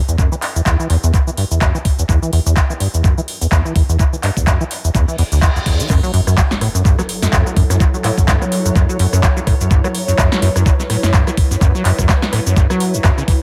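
Acid house with a trippy, raw mood, cut from a longer piece: a squelchy, resonant sawtooth acid bass riff with a filter sweep, chorus, tube saturation, sidechain pumping and dub echo sits up front beside a thumpy, sampler-style electronic kick, while an analog drum machine adds a punchy snare, metallic hats, handclaps, rim click, shaker and crash, its tape echo and large-room sound giving it a tape-warm edge. A background reverse cymbal from 5.1 seconds leads into an electronic impact at 5.9 seconds, where the drop lands on an F#m7 chord. From 6.8 seconds a cloudy, detuned granular pad of triangle tones enters with a slow attack and long release, carrying its own reverb and sidechain pumping within a lightly reverberant, echo-heavy mix.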